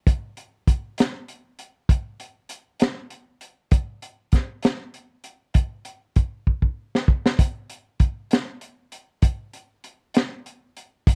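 Swaggering and laid-back, this short blues excerpt in a straight 12/8 features only a crunchy breakbeat drum kit of hi-hat, kick and high-tuned snare, its saturated, gritty sound dark with a rolled-off top and up front in a dry, close 1970s-style studio recording, with a drum fill at 6.5 seconds.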